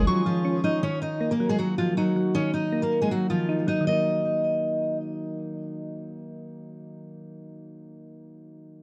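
A menacing, hard-hitting hip hop excerpt in Eb minor at 158 BPM with a half-time feel, led up front by a full-bodied fingerpicked steel-string acoustic guitar melody with digital delay, over round, mellow electric-piano-like synth keys treated with chorus. A pure FM synth bell with chorus and delay and a dark, cloudy granular pad open on a Dbadd9 chord before dropping away at 0.8 s as the harmony moves to Ebm, and the guitar stops at 5.0 s while the keys carry on to 8.8 s. The mix sits in light digital ambience with the worn, warbly pitch drift of old cassette tape.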